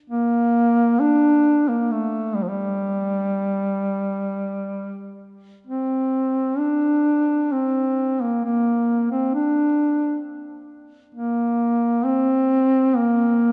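Moderate church reverb, lingering about 3.4 seconds, surrounds a lone duduk that sits up front in this solemn, mournful Caucasian folk passage, cut from a longer piece. Played in G minor at a rubato 66 BPM in 3/4, with tuning at A4 = 443 Hz, the dark duduk carries a smooth top and vibrato across its range from F3 to D4. It enters at 0.1 seconds, moves into a new section at 5.7 seconds, and plays alone through 13.5 seconds.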